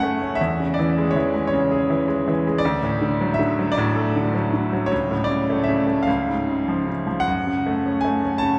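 A bright grand piano sits up front in this melancholic, dark fragment of a longer classical solo piece, its brilliant tone carrying long sustain and audible action noise that keep it intimate. The lyrical playing moves in a rubato 6/8 through C#m/E, D, Aadd11/C# and C# before settling on F#m at 7.3 seconds. A wet cathedral reverb surrounds the instrument in a vast, echoing space, with the highest overtones rolled off.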